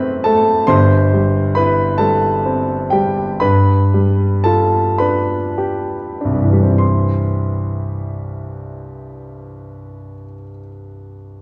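A romantic classical nocturne for solo piano, this short excerpt from a longer piece moves in a slow, rubato 12/8 at roughly 31 to 48 beats per minute in C major, with a nostalgic, dreamy mood. A grand piano carries everything alone for the full 11.4 seconds, its tone smooth and vintage, placed up front and spanning from G1 up to D6. The harmony opens on F#dim7, settles onto C/G, then leans on G7 before arriving at C at 6.8 seconds, where a second section begins. The opening stretch gradually slows down across its first 6.8 seconds, stretching the phrase toward that resolution. A wet recital hall reverb surrounds the sound, and a worn, warbling cassette-tape character adds a warbly pitch drift that deepens the sense of faded memory.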